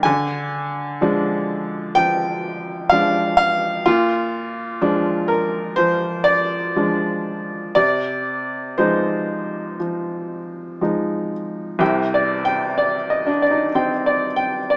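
Neoclassical minimalist piano in C minor, this short, wistful and intimate fragment cut from a longer piece moves at a rubato 58-64 BPM in 4/4, tuned to A4 = 436 Hz. A solo upright piano sits up front with a woody, natural tone, short sustain and audible action noise, ranging from C2 to Ab5 through Ddim, Bb7 and Ab6/C before settling on Cmadd9 at 11.8 s for a new closing passage. A moderate stone-room reverb surrounds it, and the overall sound has the small character of a modest speaker.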